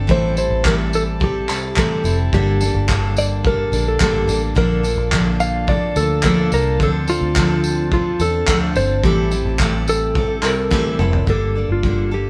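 Acoustic pop at 107 BPM in 4/4 with a tender, reflective mood, built on a full-bodied picked steel-string acoustic guitar and a round, foam-muted vintage electric bass, while a dark, compressed clean lap steel guitar carries the melody with fingerpicks and slide, a warm classical-style brass ensemble holds sustained chords in the background until 11.3 seconds, and a cloth-damped, thuddy, lo-fi drum kit with fat snare, tight kick, toms, tambourine and handclaps sits up front and plays a fill from 10.7 seconds, the band playing live in a moderate stone room over Am7, Gmadd9, Bbmaj7 and Dm7 changes.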